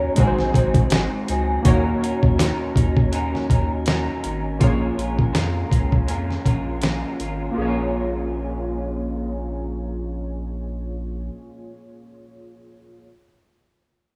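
A lightly swung 4/4 groove from a gritty, compressed sampler-style drum kit, with a thumpy kick and fat snare up front, carries this hazy, wistful slice of indie bedroom pop until the drums drop out at 7.4 seconds. A round, deep analog bass sits beneath a slightly broken-up electric guitar, played through a small old amp with a drifting warble in its pitch, and detuned lo-fi synth keys that add a nostalgic, mellow chorus shimmer over Ab7, Ebm7 and Bbm7. A hollow, woody clarinet-like synth lead with phaser and slapback echo appears briefly in the background during the first 1.2 seconds, and the whole passage sits in a rough home-demo mix with small room ambience and light reverb.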